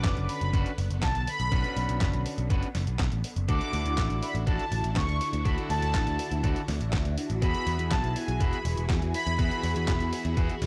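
From the first beat, this short italo disco excerpt at 122 BPM in a straight 4/4 sets a nostalgic, danceable mood, with a thumpy, tape-warm electronic kick and a detuned 8-bit drum machine supplying handclaps, hi-hat and a medium-tuned snare. A punchy, growly picked electric bass sits up front, bright and direct, while an electric guitar at the edge of break-up adds picked stabs that fall away at 10.5 seconds along with the kick. Underneath, a phased string machine holds swirling, sawtooth chords with a slow attack and long release, its ensemble chorus and phaser giving it an evolving vintage shimmer. On top, a mellow synth brass carries the melody in a high register, round and dark with a filter sweep, chorus, analog delay and a touch of 12-bit sampler grit. The harmony moves from Bmadd9 to Dadd9 at 3.5 seconds and Eadd9 at 7.4 seconds, all set in a dry, gritty hardware sound with a digital ambience.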